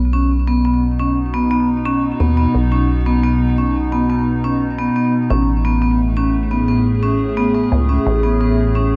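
A rubbery, resonant acid bass opens this intricate, glitchy IDM fragment at 87 BPM in B mixolydian, joined at once by a warbling, lo-fi pad of sustained chords treated with chorus, phaser and built-in reverb, and by ringing, metallic vibraphone arpeggios with delay, all in a boxy small room as the harmony moves from B to Amaj7 at 5.3 seconds.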